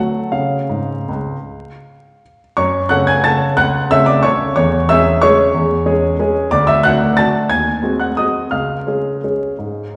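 Through vinyl crackle, a dulled top end and the wet 1.5-second reverb of a recital hall heard from further back, a solo grand piano with an intimate tone, short sustain and audible action noise plays an elegant, bittersweet classical waltz in F# minor, moving in a rubato 3/4 at roughly 153-193 BPM and shifting at 2.6 seconds from its opening phrase into a new passage that travels from F#m through D and G#7/D# to a close on C# in this brief cut from a longer piece.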